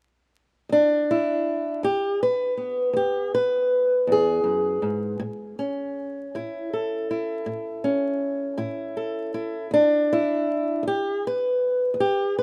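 A steady 12/8 pulse carries this laid-back, rollicking acoustic country blues fragment, cut from a longer piece, where a lone fingerpicked old ladder-braced acoustic guitar with a woody, boxy tone and old strings sits up front from 0.7 to 12.4 seconds, moving from E to A and settling on E5, all set in light reverb and small-room ambience within a rough home-demo mix dusted with vinyl crackle.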